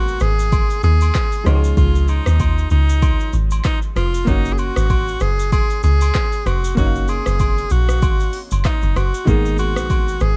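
Mellow and sultry, this short afrobeats excerpt at 96 BPM with a swung sixteenth-note feel sets a bright, close-miked tenor saxophone melody with vibrato over a clear, worn grand piano playing short-sustained chords from G#madd9 through C#add9 and F#, while a deep, round log drum bass sits up front with a fast, percussive attack, an electronic afro-pop drum kit with a deep kick, metallic hats, handclaps, rim click and shaker carries overdrive from 0.1 seconds, and agogo bells and woodblock stay dry in the background, all in a dark, warm production dusted with vinyl crackle.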